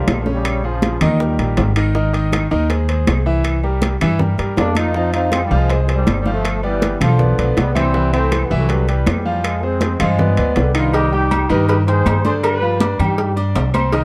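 A thumpy, woody upright bass sits up front in this fiery, driving salsa piece, joined by a brilliant, polished concert grand piano, while a mellow, distant trombone section carries the melody with light vibrato, breaking off at 1.7 seconds and returning at 4.6 seconds, over bright high-tuned congas, tight bongos and cowbell, ringing timbales and agogo bells, and faint woody claves in a dark production with light reverb.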